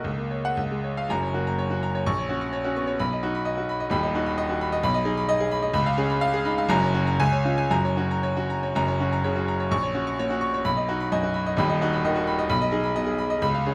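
Classical virtuoso piano study with a sparkling, heroic mood, cut from a longer piece and played in a flexible rubato duple metre by a solo grand piano that ranges from deep bass to high treble. The piano's brilliant, vintage tone has long sustain and sits up front, captured by close, detailed microphones within a moderate recital-hall reverb. After a brief opening phrase, the main passage begins at 1.1 seconds and cycles through a progression of major and minor chords before returning at 8.8 seconds to restate it.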